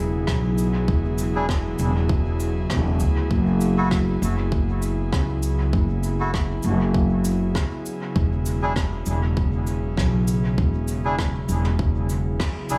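Ambient dub with a spacious, deep mood and a gently swung 4/4 feel, built on a soft, detuned pad washed in chorus, holding sustained chords over a dark, woody pizzicato upright bass that sits up front with thumpy gut-string weight. A tight, tape-warm electronic kick anchors the groove alongside a quiet brushed jazz kit of cabasa, rim click and toms in a small, natural room, its hits trailing off in dub echo. From 1.4 seconds, reedy, nasal melodica stabs with the same dub echo float over the echo-heavy mix, and the whole band lands a brief accent near 12.4 seconds at the end of this cut from a longer piece.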